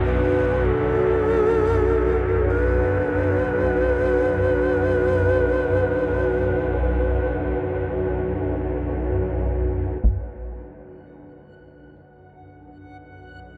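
Drenched in a huge, cavernous reverb with a dark, warm production, this unsettling drone fragment opens with an airy, reedy shakuhachi melody up front, its vibrato and tape echo drifting over a detuned, granular swarming drone and a moody analog pad with subtle chorus. A mellow, boxy grand piano murmurs very quietly in arpeggios beneath them until 10.1 seconds. A close, dry taiko ensemble strikes with hard sticks at 10.0 seconds, and at 10.9 seconds a faint, reversed, dreamy swelling texture emerges in the upper register.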